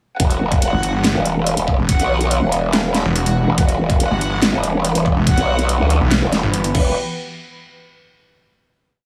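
Heavy wobble dubstep in E minor at 142 BPM with a half-time feel, this short, complete piece is chaotic and aggressive, opening straight into a drop at 0.2 seconds over an Emadd9 chord. A growling, saturated growl bass sits up front with chorus and overdrive, playing modulated phrases with changing wobble speed, while a snarling distorted saw bass, detuned and resonant with a moving notch, joins at 0.7 seconds with chopped phrases that answer the other bass. Beneath them, a layered electronic kick drum delivers a knocking half-time pulse, and a dubstep drum kit adds a huge snare, metallic closed hi-hats and crash cymbal, both tape-tinged and treated with studio reverb. A dark chamber violin section carries a woody, repeating riff melody in octaves through tape echo, supported by a veiled, muted string section holding sustained chords in the background with sidechain pumping and a low-pass filter. 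The mix is dry and loud, and after the drop ends at 7.0 seconds, a final hit rings out to close the piece.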